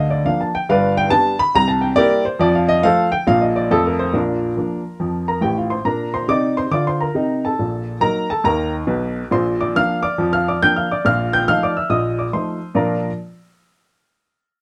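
Exuberant and playful, this short stride-piano jazz passage swings along at 139 BPM in 4/4 and Bb major, carried entirely by a solo upright piano with a woody, up-front tone that ranges from G1 up to G6. The harmony moves briskly through Bb/D, G, C7 and F before settling back on Bb. It then shifts into a new passage colored by Ebm/Bb and F7/Bb, and the piano stops at 13.1 seconds, just after a return to Bb at 12.8 seconds. A moderate studio reverb gives the cut a modest sense of room.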